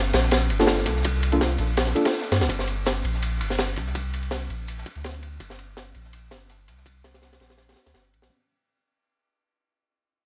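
A deep, mellow chord stab with a detuned, wave-folded edge enters early in this raw, atmospheric drum and bass and jungle excerpt, sounding from 0.6 to 2.1 seconds with chorus and dub echo over Gm9, before the harmony moves to Gmadd11 at 2.5 seconds. Beneath it, a round, soft dub sub bass with tube saturation sits up front from the very start, holding sustained notes in G minor at 165 BPM in a straight 4/4, with the whole piece tuned to A4 = 435 Hz. A crunchy acoustic breakbeat kit of kick, ride and snare drives the groove up front, with a tight kick, a high-tuned snare, shadowy cymbals and a rolled-off top. A second, quieter kit of hi-hat, snare and tambourine sits further back in a small room, sharing that gritty, saturated character. Light reverb, a dry hardware grit and vinyl crackle colour the sound as the whole passage fades out across its length.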